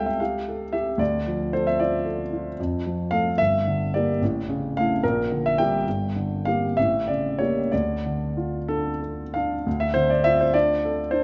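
Romantic classical character piece for solo grand piano, stormy and brooding, flowing in 6/8 with free rubato; the intimate, up-front piano carries audible action noise and sits in a moderate large-studio reverb with a softened top end, its harmonies turning through a tense altered dominant at 6.8 seconds before resolving, in this short cut from a longer work.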